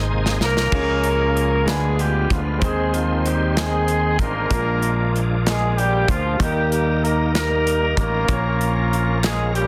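Slow gospel in 6/8, reverent and soulful, where a clear, up-front horn section with light vibrato and octave doubling carries the melody over woody upright piano in the background, a shouting tonewheel organ with key click and slow rotary speaker, a punchy fingered electric bass and an airy, polished drum kit that opens with a fill, all in a large studio reverb and a dense modern master, while a very quiet crisp handclap appears at 9.2 seconds.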